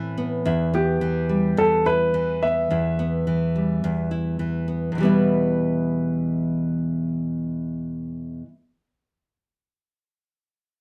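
A lightly swung 4/4 pulse at 106 BPM carries this reflective, tender pop fragment in E minor, where an up-front, fingerpicked classical nylon-string guitar with audible finger squeak plays accompaniment throughout, and a clear, woody upright piano with intimate action noise and long sustain sings a brief, polished melody from 0.7 to 4.4 seconds within a moderate studio reverb.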